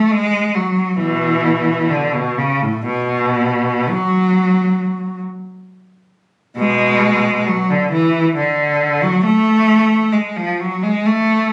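Classical and expressive, this yearning, lonely fragment of a longer piece features an unaccompanied cello, rich and smooth with vibrato, bowed by one player up front across a range of A2 to A3, moving freely in rubato at 54-70 BPM in 3/4, captured on a phone in a room with a light club reverb and compression.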